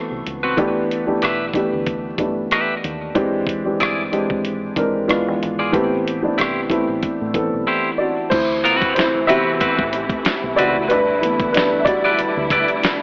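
Sensual and smooth, this neo-soul R&B excerpt sways on a lightly swung groove, with a dark, woody upright piano up front, its action noise audible, beside a gritty, compressed sampler-style drum kit with a thumpy kick, while a round, foam-muted fingered bass sits in the background. A twangy electric guitar at the edge of break-up carries a second line through warbly pitch drift and tape echo, over chords that move from D13 through E7alt to Am7. At 8.3 seconds the piano takes a solo as a lush, bowed studio string section enters with sustained chords, all heard through light reverb and an AM radio tone.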